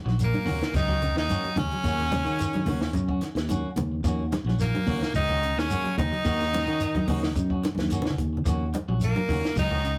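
A rough rehearsal-room recording with a small room's moderate reverb frames this driving, funky afrobeat excerpt. A forceful, gritty tenor saxophone carries the melody up front beside a direct fingered electric bass. Behind them, a growling trumpet in the background and a very quiet, close-miked baritone saxophone play second lines. Clean picked electric guitar stabs and faint, hollow-body semi-hollow guitar arpeggios sit over a dry compact cocktail drum kit with a high-tuned snare, tight kick and a fill at 7.6 seconds, while bright, thin-skinned congas and a grainy, mellow shekere fill out the groove.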